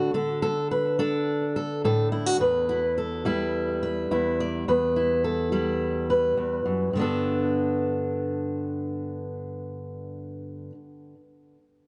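Warm and uplifting, this short folk excerpt in a straight 4/4 features a lone fingerpicked steel-string acoustic guitar, its fresh strings giving a warm, up-front auditorium-body tone touched by analog delay. The guitar moves from a D5 shape through Em before settling on a Gadd9 chord at 6.9 seconds, as the piece shifts into a new section. Light reverb surrounds the guitar, and the sound stays soft at the top, with nothing above 10.8 kHz.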